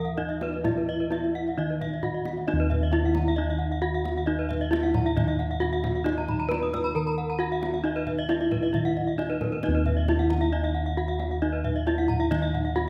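A moderate concert-hall reverb surrounds this brilliant, hypnotic excerpt of Balinese gamelan in Eb pelog, moving at 134 BPM in a straight 4/4, with a new section arriving at 2.5 seconds. Up front, a band-limited, vintage-toned bronze metallophone carries the melody, while two brighter metallophones, one of them airy, ring out arpeggios above it; all three are struck with horn mallets and paired in tuning, which produces shimmering beats. Dark, round bossed gongs hold the bass up front, and a tight kendang sits distant in a large room.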